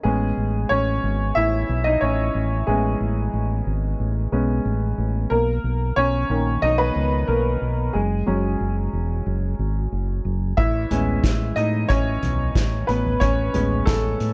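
Hopeful and warm, this short cut from a longer piano-driven pop piece moves at 91 BPM in a straight 4/4. A clear, woody upright piano carries the accompaniment up front, its worn, slightly detuned character giving the chords a lived-in charm as they move from Amaj7 through Bmaj7 to F#sus2 and back to Amaj7. A fingered electric bass sits close beside it, dark and round with a punchy, direct tone anchoring the low end. The piano remains the featured voice over the bass throughout, and at 10.6 seconds a soft-mallet drum kit joins, sounding distant and roomy with dark cymbals, a medium-tuned snare and a punchy kick. The overall sound is dry and intimate, with little reverb on the mix.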